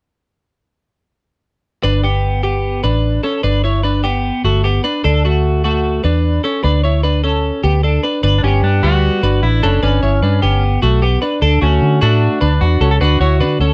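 Breezy and youthful, this short cut from a longer jangly indie pop piece moves at 150 BPM in a straight 4/4, with a bright, twangy twelve-string electric guitar playing arpeggios up front over a dark, round, foam-muted fingered bass, both starting at 1.8 seconds as the chords shift from G to D. At 8.4 seconds an electric guitar through a small old amp enters with a slightly broken-up melody, sharing the twelve-string's slapback echo. The sound is dry, with the rough feel of a home demo mix.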